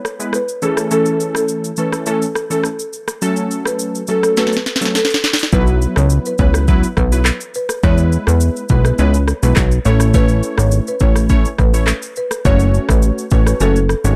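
Afrobeats excerpt at 104 BPM in a breezy, sunny mood, where a woody marimba melody with tape echo floats over detuned, chorused analog keys and a produced afro-pop kit of deep kick, sharp snare, rim click, shaker and handclaps, with a drum fill at 4.4 s leading into a punchy, funky sawtooth bass that enters up front at 5.5 s, all in a dark, dry production moving through E, A and F#m.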